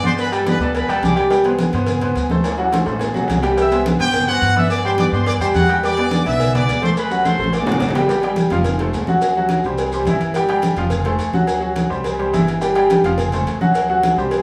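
A roomy live-band sound, bathed in a wet, large studio reverb, gives this festive salsa excerpt a lively, danceable air. At a brisk 212 BPM in straight 4/4, a brilliant baby grand piano with long sustain sits up front and carries the accompaniment throughout, over a woody, thumpy upright bass plucked pizzicato on gut strings. A tight trumpet section, bright with light vibrato and placed up front, states the melody briefly at the very start and returns from 3.6 to 7.9 seconds. Thick-skinned, damped congas and grainy, vintage-tinged maracas drive the groove from the first beat. At 0.2 seconds they are joined by distant, metal-shelled agogo bells and timbales and by round, low-tuned cowbell and bongos in the background. Two drum fills punctuate the first half as the harmony moves through Cmaj7, Gmaj7 and Em7, before a repeating cycle of Fsus2, F, D7 and C takes over in the second half.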